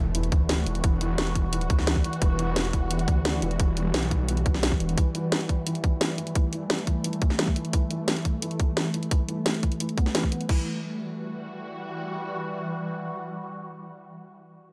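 An overdriven, tight electronic kick sits up front in this dark, mechanical technical drum and bass fragment, joined by a layered drum kit with a cracking snare, crash and hi-hat; a thick, detuned saw bass with chorus and sidechain pumping that drops out at 5.0 s; a very quiet electronic impact at the start; a felt-muted upright piano with audible action noise playing low-passed, tape-echoed arpeggios; and a swarming, warbling drone of sustained chords with phaser, both piano and drone carrying filter sweeps through the first 10.5 s before the drone plays alone from 10.7 s.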